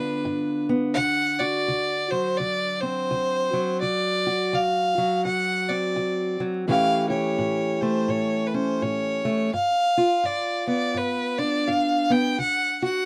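Close, detailed microphones, light reverb and a vinyl crackle frame this rollicking, laid-back acoustic country blues excerpt at 84 BPM in a swung 4/4, where a rich, smooth-topped bowed fiddle with light vibrato carries the melody up front over a boxy parlour steel-string guitar with fresh strings, fingerpicked throughout the 13.1 seconds as the harmony moves from G7 to D7 and A7, back to G7, and settles on D.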